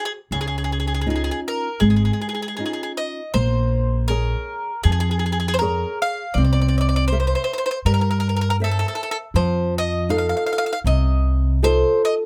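A bright, picked bowl-back mandolin carries the melody up front over a full-bodied, fingerpicked nylon-string guitar from the opening, with finger squeaks in the classical guitar part, in this romantic yet lively Italian folk serenade at 80 BPM with a gentle swing. An upright bass joins at 0.3 s, its woody pizzicato steel strings sitting up front beneath the others. The harmony opens in Db major and turns to Bb minor at 3.3 s, moving through Bbm7, C7 and F7, all captured with close, detailed microphones and little reverb in a short cut from a longer piece.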